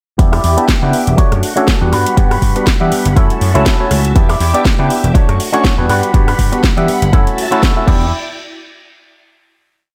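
A punchy four-on-the-floor electronic kick, a house kit with cracking snare and metallic hats, a funky syncopated line on vintage slap bass, stringy clav chords, a twangy envelope-filtered guitar riff and a swirling, bright string machine pad all start together in this groovy, funky filtered disco house piece with a lightly swung sixteenth feel. A filter sweep runs through the groove over the low-pass-filtered bass, guitar, clav and strings. The sidechain pumping on those parts and on the hats and cymbals gives the piece its breathing motion, while phaser colours the clav and strings. The groove ends at 8.1 seconds on a final hit.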